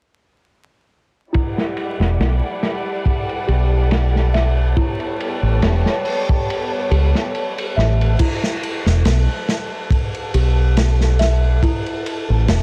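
Brooding and smoky, this trip hop passage rests on a gritty, saturated breakbeat kit with dark cymbals and a round, punchy dub bass played with the fingers, both sitting up front, while a lush bowed violin section holds sustained chords over Em9 and A9. A delicate, bell-like celesta spins arpeggios through tape echo in the background, and both it and the strings move under a filter sweep until the violins stop at 8.2 seconds, just after the kick drops out at 6.5 seconds. A breathy, wind-like tuned noise texture drifts beneath it all, and vinyl crackle gives the dark production its aged grain.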